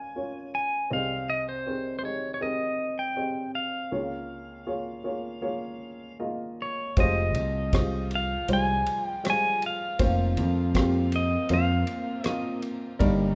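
A bright, twangy pedal steel guitar sings the melody over a mellow, woody upright piano from the outset of this heartbroken, intimate folk-pop ballad at 80 BPM, its clean fingerpicked slide lines shaped by volume swells. At 7.0 seconds, as the harmony settles on Fmadd9, a punchy fingered electric bass and a cloth-damped, thuddy drum kit with a tight kick, dark ride cymbal and rim clicks join, while a distant, reedy string section with gut-string tone holds sustained chords in the background. The band plays together in one large studio with moderate reverb, in a passage cut from a longer piece.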